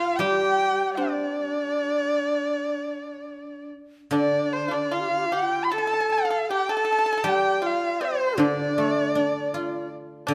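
Tender and graceful, this short excerpt of Chinese traditional chamber music moves in a free, rubato 4/4 around 77 BPM in the D yu mode, tuned slightly low with A4 at 437 Hz. A single bowed erhu carries the melody up front, its vibrato and portamento giving the line an expressive quality. Beneath it, an end-blown bamboo xiao adds a pure, bright second line with soft attacks and vibrato, while a pipa plucked with fingerpicks contributes a dry, percussive second voice. The guzheng, also up front, supplies ringing, silvery accompaniment in its lower register. All four instruments play throughout the roughly 10-second passage, which shifts into a new section at 4.1 seconds, and a moderate recital hall reverb gives the ensemble a natural sense of space.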